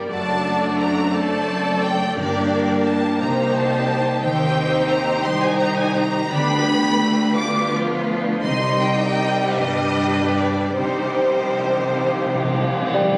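Heard through a phone in a reverberant room, this fragment of a slow, rubato orchestral movement in 6/8 carries a solemn, yearning character. A rich, focused violin section sings the melody with vibrato over a darker, expressive second violin line with portamento. Smooth violas, clear cellos in the background, very quiet double basses and a ringing, thumb-plucked harp fill out the texture, while very quiet timpani enter at 2.2 s and later add a fill from 10.8 s. At 12.9 s a mellow, up-front bassoon and a soft horn section holding a chord join just as the fragment ends.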